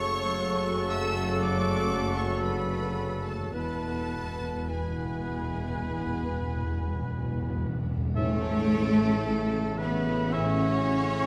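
A tender, serene excerpt from a slow romantic orchestral movement in A major, recorded with moderate concert hall reverb. The music moves at 51-61 BPM in a rubato 4/4 through F#m, E and A. A clear, smooth violin section carries the melody over a rich, distant cello section and double basses. Pure, hollow flute, oboe, clarinet and a second violin section add supporting lines, while a very quiet bassoon and viola section accompany. A mellow French horn section and a dark, roomy trombone section sustain chords, a ringing, thumb-plucked harp plays arpeggios, and a trumpet adds stabs in the background. From 3.5 seconds, close timpani played with medium mallets bring a fill, joined by a very quiet dark cymbal swell and tam-tam, before the full orchestra accents the arrival on A at 8.2 seconds.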